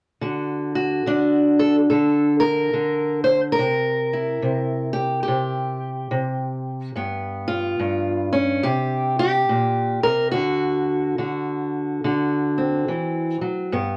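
Swaggering and soulful, this short cut from a longer acoustic country blues piece moves at an unhurried 71 BPM in 4/4 with a swung eighth-note feel. A lone fingerpicked steel-string acoustic guitar, dark and boxy with a parlour character, sits up front in light reverb from 0.2 to 14.0 seconds, ranging from G2 to C5. It works through D, C7, G7, C5 and D7.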